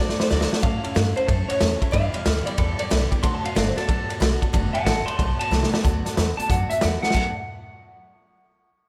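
Swung eighths in 4/4 drive this rollicking, retro rockabilly excerpt, where a twangy, slightly broken-up electric guitar through a small old amp carries the melody with spring reverb and tape echo over an up-front, gritty garage drum kit with dark cymbals, a punchy kick and drum fills, a woody pizzicato upright bass, and, in the background, a bright picked steel-string acoustic guitar with finger squeak and a jangly, detuned honky-tonk upright piano, set in small room ambience with light reverb.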